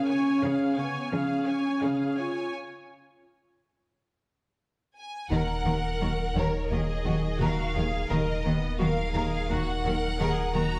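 This brooding, relentless cinematic cue blends orchestra and electronics at 86 BPM in 4/4, set in Eb minor. It opens on a Db chord with a mellow French horn section holding sustained chords, an intense, lush viola section in accompaniment, and a smooth, even cello section on the bass line in the background. At 0.4 seconds a very quiet, twangy, string-like resonator pluck joins with bright, chorused arpeggios, its sawtooth tone shaped by a filter sweep, a moving notch and a noise layer. A break runs from 2.5 to 5.3 seconds. A focused, vibrato-rich violin section then takes the melody between Db5 and Bb5, and an expressive second violin line follows. From 5.3 seconds the harmony settles on Ebm, and the low end deepens with a close-miked tuba, a woody, very quiet double bass section and a round sine sub bass, all bathed in the wet reverb of a scoring stage.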